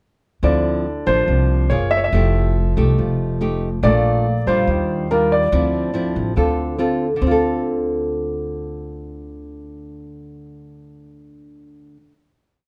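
An intimate studio sound with moderate reverb places the trio a little further back in the room, giving this short, smooth bossa nova piece a soft sense of space. At 142 BPM in 4/4 with a straight feel in D minor, the nylon-string guitar carries the accompaniment from 0.4 to 12.1 seconds, fingerpicked in a classical manner with thumb bass and syncopated plucked chords, sitting up front with a warm tone. The upright bass plays pizzicato throughout, woody and thumpy, outlining a two-feel of roots and fifths in its low register. A warm grand piano, also up front, states a motif-based melody of hook phrases in a narrow upper range, stopping at 6.1 seconds. The harmony moves through rich extended chords such as Dm9, F#maj9, Bbmaj7 and Ebmaj9 before coming back to Dm9 and settling on Dm7. After the opening section, a final chord rings from 7.2 seconds as guitar and bass carry the piece to its close.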